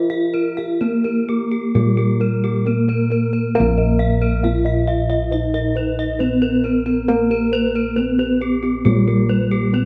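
This is a serene, ceremonial piece of Javanese gamelan in the pelog barang scale on Bb, tuned slightly low, moving at a steady 68 BPM in straight 4/4 and cut from a longer piece. A bronze metallophone carries the melody, struck with padded disc mallets for a mellow, soft tone whose paired tuning produces shimmering beats, set in a boxy small-room color. Above it, a second metallophone plays arpeggios with a horn mallet, giving a bright, ringing edge. A set of bossed gongs traces arpeggios in the same upper range with a round, mid-forward sound that sits up front. Lower down, another set of bossed gongs holds the bass with padded beaters, dark and smooth in the background. All four parts sound together throughout, a new section begins at 3.6 seconds, and a moderate recital-hall reverb of about 1.5 seconds gives the whole ensemble a gentle sense of space.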